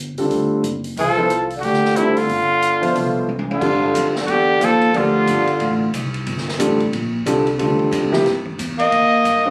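A breathy trumpet with scooped notes and vibrato leads this cool, hypnotic modal jazz excerpt, joined by a bright tenor saxophone second line, over an intimate concert grand piano with audible action noise, a woody pizzicato upright bass and an open drum kit with dark cymbals and a boomy kick, whose fill arrives just before the shift at 3.6 seconds, all heard as if caught on a phone in a club.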